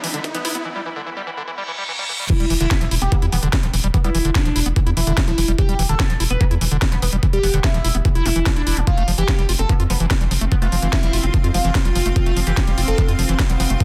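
A dense, heavily limited modern mix with a digital ambience opens this driving, psychedelic trance excerpt, cut from a longer piece. The first 2.3 seconds are a build-up, with a riser and reverse cymbal, a filter sweep, drum fills and brief wisps of a cloudy, blurred granular pad, before the drop lands at 2.3 seconds. Underneath it all, a knocking, overdriven electronic kick sits up front over a deep, round analog bass, while a layered electronic kit adds a cracking snare, bright hats, toms and crash, all re-recorded in a small room. A squelchy, gritty acid bass riff with distortion, tape echo and sidechain pumping runs throughout, and a juicy resonant blip pluck with phaser and dub echo sits in the background. The screaming, guitar-like synth lead carries the melody with vibrato, distortion and dub echo. The harmony moves from E5 to F5 at 8.9 seconds, and the evolving granular pad returns at 9.9 seconds.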